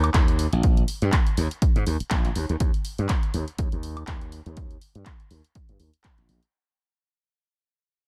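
Filtered disco house at 122 BPM with a funky, joyful swing on the 16ths, this short fragment fades out throughout, as a glassy, bright slap bass sits up front, pumping against the sidechain while a low-pass filter sweep shapes it. A punchy analog kick drives the groove, and a drum machine adds handclaps, hi-hat and woodblock, with the hats and percussion also pumping, all set in digital ambience with a dark production.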